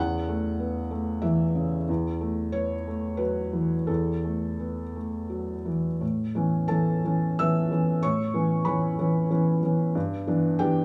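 This neoclassical minimalist piano piece is melancholic and reflective, a short passage cut from a longer work. A solo felt-muted upright piano carries it alone, its mellow, intimate tone sitting up front with a vintage character and a thin layer of felt softening each note. The pulse moves in 3/4 at roughly 84-97 BPM, played with a free, rubato feel, and the instrument is tuned slightly low to A4 = 438 Hz. The harmony opens on A over E, shifts to Aadd9 as a new section begins at 6.0 seconds, and settles on Em7 over G near 9.9 seconds. The playing spans the low E2 up to E6, and light reverb gives the close sound a little air around it.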